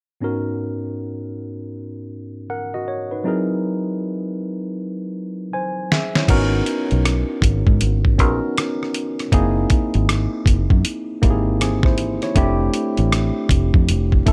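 A worn, slightly out-of-tune tine electric piano, lightly overdriven through a combo amp and placed up front, opens this sultry, late-night neo-soul and R&B passage, cut from a longer piece, on its own over G#m9 and F#13 chords. At 5.9 seconds a dusty, sampler-style drum kit arrives: gritty and compressed, with a thumpy kick, a fat snare, rim clicks, hi-hat and crash cymbal, and a drum fill carries the music into its second section. At 6.3 seconds a fingered electric bass joins, direct, foam-muted and punchy, sitting up front in the low register. The swung sixteenth-note feel keeps the groove loose and unhurried as the chords cycle again, shifting to Fmaj9 at 12.4 seconds. Light reverb and a digital ambience lend the mix a soft sense of space.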